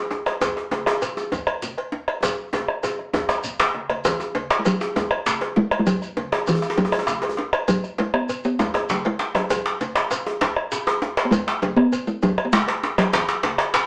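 Heard from further back in a reverberant studio with a small-speaker sound, this driving, powerful West African drum ensemble excerpt moves at 132 BPM in a straight 12/8. Two djembes carry the groove: one tight and cracking with metal rattles, struck with hard hands up front, the other medium-tuned and softer-handed. Around them sit a deep, dark bombo, a metallic cowbell, bright, compressed, saturated congas in the background and a grainy, mellow, vintage-toned shekere. After a drum fill from 2.2 seconds, a short-ringing talking drum enters at 4.0 seconds, carrying the melody up front with plate reverb.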